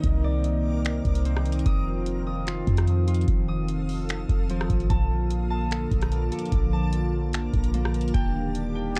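The recording is close and dry, with a dark, warm production that keeps the sound near. This short cut from a longer piece is atmospheric cloud-rap hip hop at 148 BPM in 4/4 with a half-time feel, and it moves through Cm9, F7, Bbmaj7 and Ebmaj7 in a spacious, ethereal mood. A booming analog drum machine sits up front with a deep kick, metallic hats, finger snaps and rim clicks, its tone tape-warm. A clean 808-style bass carries the low line with a boomy sine tone and a fast attack that decays, while a moody, detuned sawtooth pad with a sub octave holds sustained chords under chorus and sidechain pumping. Above them a fingerpicked Celtic harp rings out arpeggios through delay, and a faint backwards texture adds reversed, granular, bright swells in its own reverb, all parts playing together from 0.0 to 9.0 seconds.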